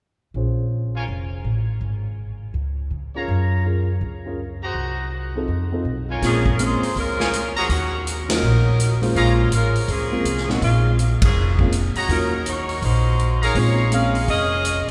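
A swung 4/4 at 164 BPM drives this dramatic big band jazz fragment in Bb minor. A woody, thumpy upright bass and a dark, mellow baby grand open at 0.3 and 0.4 seconds, with tight, brilliant trumpet section stabs carrying a light vibrato. At 6.2 seconds a punchy swinging drum kit enters as an up-front saxophone section with vibrato takes up the melody, while full-band accents land at 8.2 and 11.2 seconds inside a cavernous cathedral reverb.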